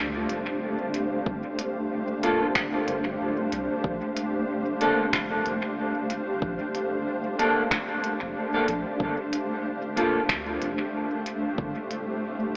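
Deep and hazy, this ambient dub excerpt drifts on a cloudy, detuned granular pad with built-in reverb holding sustained chords over a round, tube-saturated sub bass, while an up-front, tape-toned kit of crisp hi-hats and finger snaps carries dub echo, an overdriven electronic kick enters at 1.3 seconds, and a dark, clean electric guitar adds chorused, echoing stabs from 2.2 to 10.2 seconds, all wrapped in a moderate echo-chamber reverb and an AM-radio sound as the chords move from G7sus2 to Bbmaj7.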